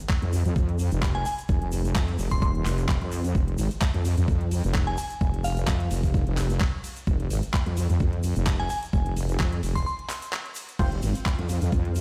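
A knocking electronic kick sits up front from 0.1 s in this swaggering, gritty bass house excerpt at 129 BPM in F minor, with a light 16th-note swing. It is layered with a tape-toned garage kit of metallic hi-hats, handclaps, crash and ride, both carrying a small room ambience, while a grainy, bright tube shaker ticks in the background. Almost at once a heavy, up-front wobble bass enters, built from detuned sawtooth and sine tones, saturated and compressed with chorus, overdrive and sidechain pumping, yet mellow at its core. From 1.1 s a glassy, crystalline FM bell melody rings high above with chorus and delay, its notes decaying into long tails. After the bell line ends, a brief break gives way at 10.8 s to a single hollow, nasal organ stab with delay and an evolving, detuned sawtooth pad that swells in slowly behind the groove, both pumping against the kick. The dry mix sounds as if played on a big sound system in a bare stone room.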